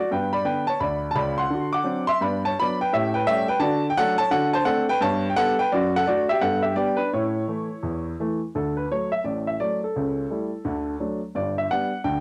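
Swinging eighth notes drive this exuberant, playful stride jazz fragment, cut from a longer piece, in which a clear, up-front baby grand piano plays solo from the low bass to the high treble, its present tone colored by cassette tape and set in the moderate reverb of a small room in a home recording, moving through a first section into a second at 8.5 seconds.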